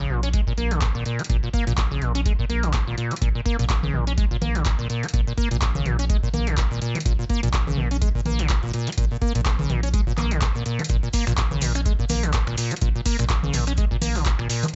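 Gritty and driving, this acid house piece runs at 125 BPM in 4/4 with a 56% swing on the 16ths, sitting on a Bb minor chord in Bb minor pentatonic, tuned to A4 = 443 Hz. Up front, a squelchy, resonant sawtooth acid bass plays the riff between Bb2 and Db4, its filter sweep and snappy, decaying notes roughened by tube saturation, analog chorus and cassette tape grit. Underneath, a round, dark analog bass built from triangle and sine tones holds long notes between Ab1 and Bb1, pumping against the sidechain. A deep electronic kick anchors the groove, and an analog drum machine adds congas, finger snaps, handclaps and metallic hi-hats, both drum parts re-recorded in a large room. Grainy, mellow maracas slip in very quietly at 10.9 seconds, close and dry, as this excerpt from a longer track carries on with a dry overall sound and its top end capped at 7.9 kHz.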